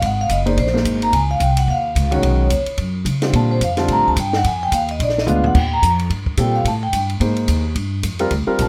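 Upright bass and a compact cocktail drum kit open this brisk, relaxed small-group swing and bop excerpt at 217 BPM in 4/4, with swung eighth notes. The pizzicato bass sits up front with a woody, thumpy gut-string sound, while the dry, natural kit offers dark cymbals, a high-tuned snare and a punchy kick. The vibraphone takes the solo almost immediately, its medium mallets drawing a metallic, ringing tone with a slow motor vibrato in a compact upper register. A dark, mellow grand piano joins at 0.5 seconds, also placed up front, comping through colourful harmony that moves from Ab9 through major-seventh, add9 and suspended chords before settling on Gm7. The drums mark the turn into the second pass of the tune with a fill at 5.3 seconds, and a light reverb gives the group a gentle sense of space.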